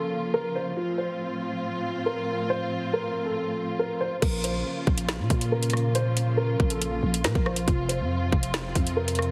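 Drill hip hop with an ominous, tense half-time feel opens on a dark, boxy concert grand piano melody touched with delay over lush, bowed studio strings with vibrato, before a growling, buzzy 808-style bass and an up-front electronic drill kit with a hard-clipped kick, woody snare and metallic hats enter at 4.2 seconds, all in a heavily compressed, radio-like sound with light reverb.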